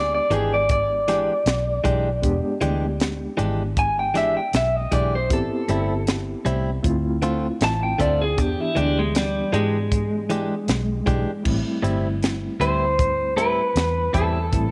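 Straight-eighth soul blues in A minor at 78 BPM, this brooding, smoky passage is cut from a longer piece. An electric guitar through a small old amp carries the melody up front, its slightly broken-up, picked tone compressed and bathed in spring reverb, and a clean electric guitar solo runs from the start to 11.4 seconds. Beneath it, a reedy electric piano shimmers with fast tremolo, while a dark, foam-muted fingered bass holds a round low end. A bright, twangy clean guitar recorded direct adds stabs, and a tight funk drum kit with a high-tuned snare, tight kick, hi-hat and crash sits dry and polished up front. The harmony opens on E7#9 before moving through Am7 and Dm7, returning to E7#9 and settling on Am7 as a new section begins at 11.4 seconds, all within light reverb and a small room ambience.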